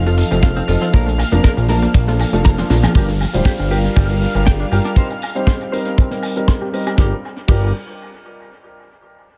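Sleek and sensual, this nu-disco excerpt opens straight on a drop, with a fat, detuned sawtooth analog bass and a tight, up-front acoustic kick anchoring a lightly swung groove. A funk drum kit with a high-tuned snare, hi-hat, ride, crash, tambourine and woodblock plays throughout, its dub echo trailing behind, and a drum fill leads into a band accent at 2.8 seconds. A dark, mellow concert grand piano comps chords through sidechain pumping and dub echo, while a bright, twangy clean electric guitar sits in the background with lush chorus and its own echo. Above them, a thick unison pad holds slow-attack chords, and a very quiet, punchy sawtooth pluck runs arpeggios until 2.9 seconds. From 3.0 seconds, filter sweeps move over both the piano and the guitar as a background electronic downlifter descends through the Gm7 to Cm7 changes, leaving an echo-heavy mix with little room reverb.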